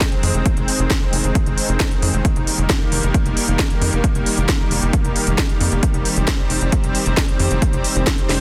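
Uplifting trance in a euphoric, emotional vein, this short cut from a longer piece sets a lush, detuned unison pad of bright sustained chords, treated with chorus and sidechain pumping, over a tight sequencer bass whose punchy sawtooth plucks also pump from 0.2 s, while an overdriven, heavy electronic kick and an up-front techno kit with cracking snare and smooth hi-hats push the groove through a digital ambience and a dense, heavily limited modern master.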